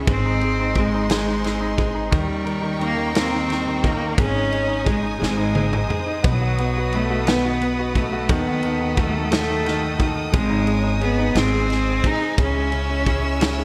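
Bathed in a lush hall reverb with a bright, 1980s-style digital sheen, this dramatic, aching six-eight pop ballad excerpt features a rich, bowed cello with vibrato and a touch of delay singing the melody. Beneath it, a brilliant, woody upright piano, a smooth-topped string section holding sustained chords, a very quiet, clean, direct-recorded electric guitar picking arpeggios, and a thumpy pizzicato upright bass with gut strings fill out the harmony. A loose, punchy indie drum kit with dark cymbals and gated reverb sits up front, playing a fill from 5.2 to 6.2 seconds, and the piano adds a brief fill at 13.4 seconds.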